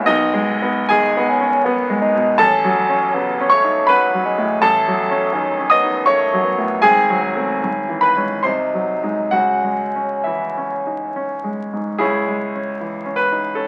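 A warm solo bassoon with light vibrato carries an elegiac, melancholic melody in C# minor, singing until 11.6 seconds over a bright, polished concert grand piano whose up-front accompaniment has deep bass and short sustain. In flexible rubato 3/4 time at roughly 65-83 BPM, this romantic classical excerpt moves through its harmonies to settle on C#m at 9.3 seconds, and the piano continues alone to 13.7 seconds. Moderate studio reverb surrounds the duo, and the sound carries the vinyl crackle of a very old 78 rpm record.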